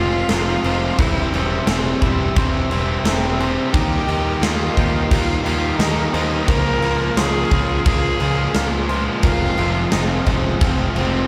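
A huge arena drum kit sits up front in this cinematic, cathartic post-rock passage, its punchy kick, medium-tuned snare and crash cymbal ringing with the natural sound of a big room from 0.3 seconds. Above it, a single bowed cello carries the melody with a clear, smooth and even tone, touched by vibrato and trailed by tape echo. Two overdriven guitars play riffs in the background: a bright picked electric with slapback echo and a hollow-body semi-hollow with a warm edge. Beneath them, a fuzz-laden picked electric bass adds grit, while a twangy, scooped clean guitar and a dark, fingered semi-hollow guitar play very quiet arpeggios. A very quiet, airy pad with a flute-like, mellow chorus glow holds sustained chords as the harmony moves from Fm7 through C/E, Eb and Bbm7/Db before returning to Fm7 at 9.2 seconds, all set in light small-room reverb in a straight 4/4 cut from a longer piece.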